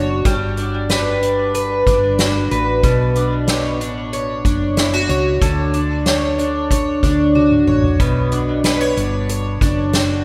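A fingerpicked twelve-string acoustic guitar, shimmering and octave-doubled up front with analog chorus, delay and shimmer reverb, opens this haunting, ethereal dream pop excerpt at 93 BPM in B minor alongside a growly, hollow-body fretless electric bass, as a distant, roomy soft-mallet drum kit with a punchy kick and gated reverb joins at 0.3 seconds and plays a fill at 7.4 seconds over Gmaj7, Bm9, Dmaj7 and Bmadd9 chords, all set in a lush hall reverb with bright 1980s-style digital production.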